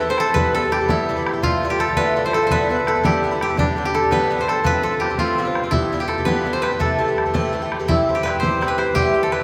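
Steeped in a cavernous cathedral reverb from a church or concert hall, this dark, lively and wild Celtic jig fragment in 6/8 at 112 BPM puts a dry, woody, fingerpicked koto up front on the melody, with an airy, reedy concert flute with vibrato adding a second line in the background, a metallic double-strung Irish bouzouki picking the accompaniment, a boomy, vintage-toned bodhran on percussion, and a faint, shimmering hammered cimbalom joining at 7.9 s as the harmony moves to C.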